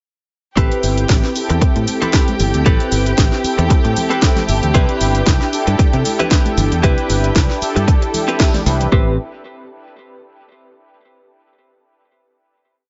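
Nu-disco at 115 BPM in A minor, sleek and sensual, with a lightly swung 16th feel over an Am9 chord: an overdriven, punchy four-on-the-floor kick sits up front beside a house kit of cracking snare, bright hats and shaker, while cabasa and congas tick in the background. A bright, funky fingered bass drives the groove, a clean direct-recorded guitar plays a compressed funk riff through lush chorus and tape echo, and round, detuned synth brass pushes held chords through chorus, phaser, tape echo and sidechain pumping. A smooth violin section holds sustained high chords, pumping with the sidechain, before a band accent at 8.4 seconds and a final chord from 8.9 seconds in a dry, dark-topped mix.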